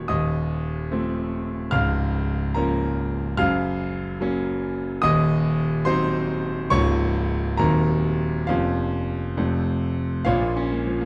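Agitated and passionate, this short classical excerpt is a virtuoso piano study in Bb minor, moving in a rubato 6/8 at roughly 65-75 beats per minute counted in dotted quarters. A solo concert grand carries the whole piece from the first moment to 11.1 seconds, ranging from a deep Db1 in the bass up to F6. The instrument sits up front with a clear, smooth tone and a vintage character, set in a moderate large-studio reverb that gives the dark production some air. The harmony presses through F7 over Eb, Gbmaj7 and diminished colours before resolving through F to Bb minor at 10.3 seconds. Cut from a longer work, the passage feels like a restless fragment of a larger drama.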